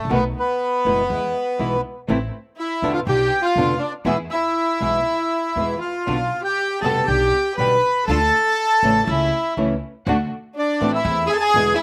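Dramatic and tense, this tango excerpt moves at 121 BPM in 4/4 with a rubato feel, as a reedy, dark bandoneon carries the melody up front while a rich, nasal bowed violin with light vibrato sits more distant on a second line. A woody, growly pizzicato upright bass anchors the low end and a fingerpicked flamenco guitar adds warm acoustic accompaniment, with a clear, lush studio string section placing bowed stabs in the background through a slapback echo. The sound is dry and open-air, captured outdoors with little reverb, as the harmony winds from B7 through Am, Bdim and Dm before settling on Am/E near 11.0 seconds.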